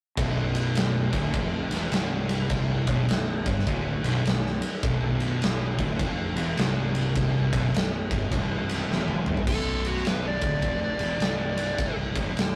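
An oversized, low-tuned acoustic drum kit sits up front in this ominous, heavy stoner and doom metal passage, its boomy kick, medium-tuned snare, toms, and dark crash and ride cymbals sounding saturated and gritty in a big, pumping room. Underneath, a fingered electric bass growls with overdriven fuzz in the background, while three picked, distorted fuzz guitars grind out the riff at 103 BPM in 4/4 with a swung feel in B phrygian: one double-tracked and compressed, one thick and shadowy, both very quiet, and a third, warmer thick guitar further back. After a drum fill at 8.9 s, the double-tracked guitar drops out at 9.5 s as a picked fuzz lead guitar takes a short, murky solo up high until 12.0 s, while the other thick guitars, bass and drums carry on. A moderate stone-room reverb and tube saturation give it the rough feel of a rehearsal-room recording, cut from a longer piece.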